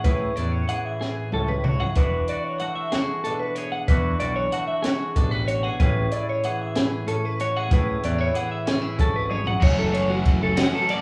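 This short cut from a longer math rock and midwest emo piece sounds like a band playing live in one room, with small room ambience and a moderate large studio reverb. The mood is bright and playful, moving in a straight 6/8 over Amaj9 and E9sus4 chords before shifting to F#m7. A bright, compressed twelve-string electric guitar spins picked arpeggios up front, while a clean, twangy electric guitar played with the fingers fills in the accompaniment beneath it. A growling picked electric bass with overdrive anchors the low end, and a compact cocktail drum kit sits up front with dark cymbals, a high-tuned snare, a punchy kick and a rolled-off top, adding fills around 1.0 seconds and again just before the change. At 9.6 seconds a crunchy, double-tracked overdriven guitar enters with a riff, giving the closing moments an extra edge.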